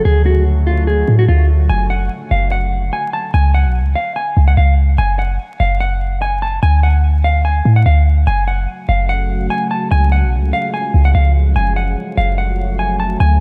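A boomy, up-front 808-style bass with a fast attack drives this menacing, hard-hitting half-time hip hop and trap piece, beneath a clean, fingered electric guitar melody in spring reverb and a deep, detuned sawtooth pad with chorus that drops out at 1.7 s and returns at 8.6 s, set in a dark digital ambience with vinyl crackle.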